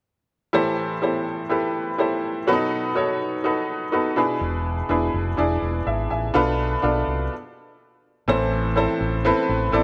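Piano-driven pop excerpt in A minor at 124 BPM, driving and earnest, led by a bright, woody upright piano accompaniment with audible action noise and a slightly detuned, up-front intimacy, joined at 4.4 s by a round, amped fingered electric bass through an envelope filter, all set in a lush hall reverb, with a brief stop at 7.3 s before the harmony resolves from a Bm7b5 back to Am.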